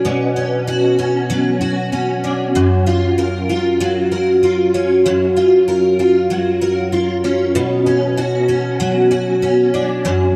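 A picked twelve-string acoustic guitar, bright and shimmering with octave-doubled, full-bodied jumbo tone, plays alone and up front through ensemble chorus and tape echo in this blissful, dreamy dream pop fragment at 96 BPM in straight 4/4, moving from Bmadd9 to F#maj7 at 2.6 seconds and back to Bmadd9 at 7.6 seconds, all bathed in a huge, wet ambient reverb with a dark, warm production.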